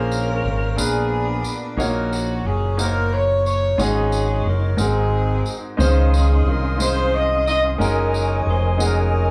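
Slow gospel in 6/8 at 60 BPM in Db major, jubilant and hopeful, this short section is carried by a close-miked, up-front saxophone section playing the melody with jazz-style vibrato over a clear grand piano, a fingered electric bass with an envelope filter, and a jingly tambourine. At 5.8 seconds a soft, flute-like tonewheel organ enters with sustained chords, colored by chorus vibrato, key click and a stopped rotary speaker, as the harmony moves from Bbm9 through Ebm9 and Ab9 to resolve on Dbmaj9. The band sounds live in one small room, wrapped in a wet studio reverb.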